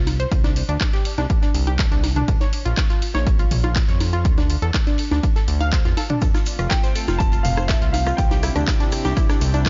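A fat, detuned sawtooth bass opens this uplifting, expansive progressive house excerpt, pumping against the sidechain as a punchy, up-front electronic kick arrives almost at once. A layered house kit adds handclaps, rim clicks and warm hats, while a dry analog drum machine sits in the background with congas, toms and rim clicks, and a very quiet, distant acoustic kit contributes dark ride cymbal and a medium-tuned snare. Over this, a round analog pluck spins arpeggios with a filter pluck, chorus and tape echo, ducking with the sidechain. At 6.2 seconds a soft, breathy pad enters with slow-attack sustained chords, joined by a grainy shaker in a large room, and at 6.7 seconds a present baby grand piano adds a short melody with tape echo. The mix is dark and warm, with light reverb and a small-room ambience.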